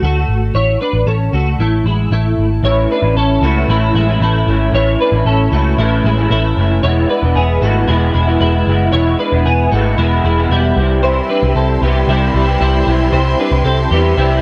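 A bright, compressed twelve-string electric guitar plays arpeggios through ensemble chorus and tape echo, set over a round, punchy foam-muted bass in this youthful, nostalgic indie pop excerpt at 114 BPM. At 2.6 seconds a slightly broken-up, twangy electric guitar through a small old amp joins with chorused accompaniment as the chords move from A to E to C. At 11.0 seconds a lush, bowed symphonic string section adds soft-attack sustained chords with vibrato, all within a dark production with light reverb.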